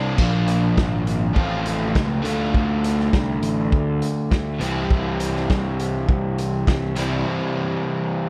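A crunchy, double-tracked overdriven guitar riff sits up front in this cool, bittersweet indie rock excerpt at 102 BPM, moving through Bb, F/A, Dm and C over a fuzz-drenched, punchy picked bass and a raw, gritty garage drum kit with a punchy kick and rolled-off top, all captured in a dry, close 1970s-style studio sound.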